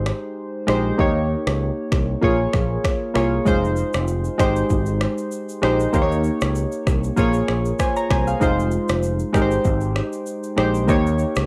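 Round, chorused analog keys with a sawtooth and pulse-wave edge, a filter sweep and a quick, decaying attack open this hypnotic, mellow afrobeats excerpt over a bright, growly fingered electric bass, with a layered deep house kit of punchy kick, rim click, finger snaps and shaker entering at 0.1 seconds through a break that lasts until 3.5 seconds, all three parts sitting up front as the harmony cycles through Abmaj7, Eb7, Bbm7 and Fm7 under light reverb and the gentle grain of a home cassette recording.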